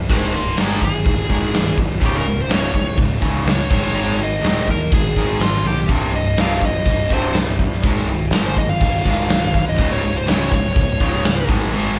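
Two crunchy, bright overdriven rhythm guitars sit in the background playing a riff alongside a punchy, fuzzed-out picked bass from the first moment of this menacing, driving hard rock excerpt at 124 BPM in straight 4/4. At 0.1 seconds a huge, airy arena drum kit joins up front with a punchy kick, a medium-tuned snare and bright crash cymbals, while a nasal lead guitar through a parked wah and overdrive plays a solo over chords moving between Ab/C, Db5, Ab5 and Cm. The band sounds live in one large studio room with moderate reverb, and the lead guitar plays until 11.5 seconds.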